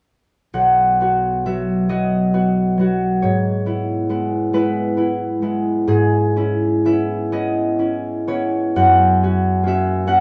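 In a gently rubato 6/8 lilt, this serene, dreamy classical passage, cut from a longer piece, features a solo concert harp, fingerpicked and ringing up front from 0.5 s to 10.2 s, moving from B through E/G# and C#m7/G# to F# across a range from B1 to F#5, set in light reverb with a dark, warm production.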